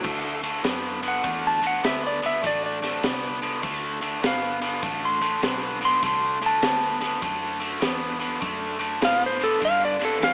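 A swung shuffle at 100 BPM in 4/4 drives this gritty, swaggering electric blues in D mixolydian, a short cut from a longer piece. The crunchy breakbeat kit has a high-tuned snare, a punchy kick, crash and ride cymbals, and a saturated, dark tone with a rolled-off top. Under it, a vintage fingered electric bass sits low and quiet in the mix, foam-muted and round. A biting, overdriven picked guitar plays the riff up front with a bright edge. From 1.1 seconds a clean lap steel carries the melody as a slide solo, its dusky tone shaped by volume swells and set loudest of the parts. Light reverb and an AM radio sound colour the whole recording, which holds on D7 before moving to G5 at 9.6 seconds.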